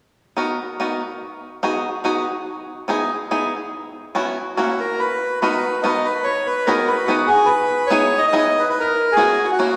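A reedy, dark bandoneon enters up front with the melody at 4.6 s over a bright, twangy bluegrass banjo that has been picking out the accompaniment with fingerpicks since 0.4 s, in this whirling, nostalgic musette waltz excerpt at 143 BPM in B major, cycling through Bmaj7, G#m7, Emaj7 and F#7sus4 chords and bathed in a lush concert hall reverb.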